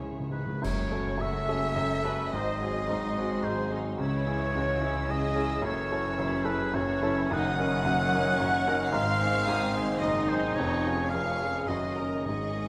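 Classical romantic music for piano and orchestra, this tragic, passionate passage is cut from a longer piece, moving in a rubato 3/4 that drifts between 88 and 114 BPM. A very quiet, close and dry timpani fill opens the music before a band accent at 0.6 seconds brings in bright clash cymbals with concert bass drum, along with a mellow, distant French horn section holding very quiet sustained chords and a rich, focused cello section on the bass. The warm grand piano sits up front with long sustain, carrying the melody from deep in the bass up to Bb4, while a lush, distant violin section adds its own smooth, vibrato-rich melody high above. A clear oboe with light vibrato shares a second line with a soft-attacked, expressive violin section, as a focused viola section accompanies and an intense double bass section anchors the low end. The harmony turns from C#m through F#m and G#7 toward Ab and Db/F, with the timpani returning briefly at 4.0 seconds and again at 12.3 seconds, all set in a moderate scoring stage reverb captured by close, detailed microphones.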